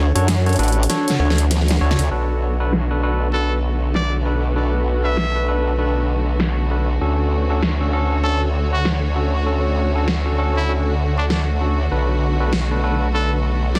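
A swaggering, gritty glitch hop cut in B minor at 98 BPM opens with barky, lightly overdriven tine electric piano stabs through delay, a detuned sawtooth wobble bass with a formant-swept, chorused growl up front, and a cloudy, evolving granular pad blurring in the background, as an overdriven dubstep kit with a huge snare and bright hats rolls into a drum fill. From 2.1 seconds, a filter sweep moves over the drums while a rich, smooth bowed string section holds sustained chords, and at 3.3 seconds a jazz-style solo trumpet with vibrato and delay takes the melody. The swung sixteenths drive the groove through a dense, heavily limited mix with light reverb as the harmony shifts between Dmaj7 and Bm7.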